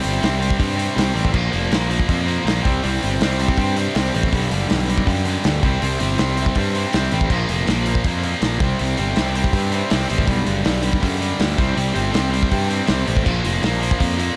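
A double-tracked, bright distorted electric guitar leads this upbeat, energetic punk rock excerpt, driving an overdriven riff from G2 to C4 at 161 BPM in a straight 4/4. Beneath it, a fuzz picked electric bass growls through an overdriven, amped tone between F1 and G2, sitting up front alongside the guitar from 0.1 seconds onward. A loose indie drum kit of kick, snare, hi-hat and crash cymbal sounds like a small room, with dark cymbals, a medium-tuned snare, a tight kick and a rolled-off top. The harmony cycles through C5, Bb5 and G across a single section that runs to 14.4 seconds. A light reverb gives the mix a touch of space, and the passage is cut from a longer piece.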